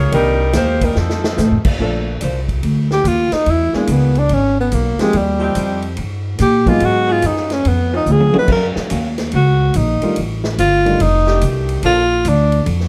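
Big band swing jazz with a brassy, joyful mood, where a clear, vintage saxophone section with light vibrato states a brief opening melody before a close-miked tenor saxophone takes a solo from 2.9 seconds over a warm saxophone section's sustained chords, a woody, thumpy pizzicato upright bass, a natural baby grand piano and a punchy big-room drum kit with fills, all within a dark production cut from a longer piece.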